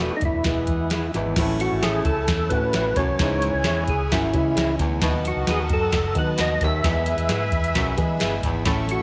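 A percussive tonewheel organ with key click, light overdrive, chorus vibrato and slow rotary speaker carries the melody in this warm, uplifting excerpt of uptempo 1960s-style soul at 132 BPM in A major, over a soft vintage rhythm box with deep kick and crisp snare, a round foam-muted fingered bass, clear woody upright piano, faint slightly broken-up guitar stabs and a bright background saxophone section, joined from about 1.2 seconds by a subtone baritone saxophone riff and from 1.4 seconds by a lush, distant violin section, all set in echo chamber reverb with some lossy compression artefacts.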